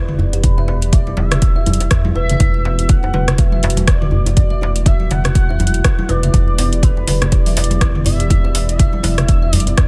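A warbling, vintage portamento lead with chorus and dub echo opens this spiritual afro house excerpt over a moody, nasal analog pad, a woody kalimba arpeggio and a deep, rumbling detuned saw bass, the last three pumping with the sidechain, before an afro-pop kit of metallic hats, rim clicks and toms, soft-handed congas and djembe in the background, and an overdriven, up-front electronic kick all arrive by 0.4 seconds, moving between Em7 and E9sus4 chords with a swung sixteenth-note feel.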